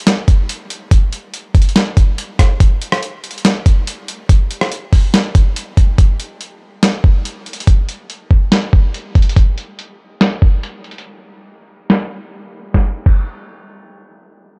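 A gritty, sampler-style soul drum kit sits up front in this melancholic, spacious hip hop excerpt, moving at 142 BPM in 4/4 with a half-time feel. The kit brings a thumpy kick, a medium-tuned snare, rim clicks, hi-hat and crash cymbal, all compressed and overdriven so they carry a dusty, small-room character. The drums play from the very start until 13.2 seconds, shaping nearly the whole passage on their own. A low-pass filter dulls the top of the recording, and the sound stays close and dry, with little reverb. The music moves through three sections, shifting at 6.0 and 12.7 seconds before the brief final stretch ends at 14.6 seconds.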